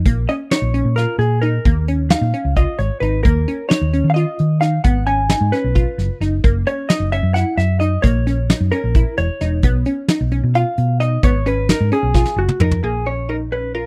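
Progressive instrumental band music in a brooding, tense 7/8 at 263 BPM in Bb phrygian, this dry, close 1970s-style studio excerpt sets a dark, clean vintage hollow-body jazz guitar soloing over a round, amped short-scale fingered bass, glassy, crystalline chorused wavetable pluck arpeggios and a soft brush kit with fat snare and punchy kick, whose fill at 12.1 s leads into a new section at 12.8 s.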